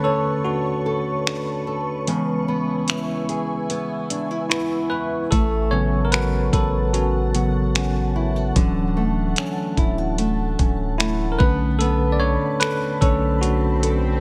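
Contemporary R&B at 74 BPM in B dorian with a late-night, longing mood, this slice of a longer piece is led throughout by a bright, bell-like tine electric piano up front over a blurred, detuned granular cloud pad and dark fingerpicked flamenco guitar arpeggios with digital delay, as an electronic drum kit of finger snaps, metallic hats and a knocking kick with 12-bit sampler grit enters at 1.3 s, a deep, mellow 808-style sine bass arrives at 5.3 s under chords moving from Bm9 through C#m7, A69 and Dmaj7, and a faint electronic swell enters in the background at 12.9 s, all in light reverb.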